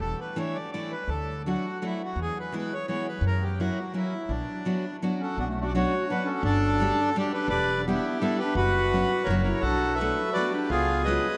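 A brisk 3/4 musette waltz at 168 BPM in B minor, whirling and bittersweet, sets a reedy, dark accordion melody up front over growly, woody pizzicato upright bass and picked steel-string acoustic guitar with audible finger squeaks, while a breathy, whispered clarinet with jazz-style vibrato and scooped notes joins as a second line at 5.2 s, all washed in a vast, echoing cathedral reverb in this short cut from a longer piece.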